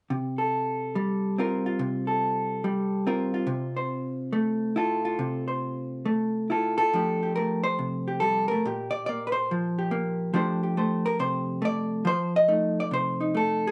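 Swung eighths loosened by rubato carry this relaxed solo jazz fragment, cut from a longer piece, in which a dark, clean, compressed hollow-body electric guitar sits up front, picking through chords from C7sus4 to F13 with a new section arriving at 6.9 seconds, the room captured live with a short, wet studio reverb and a muted, rolled-off top end.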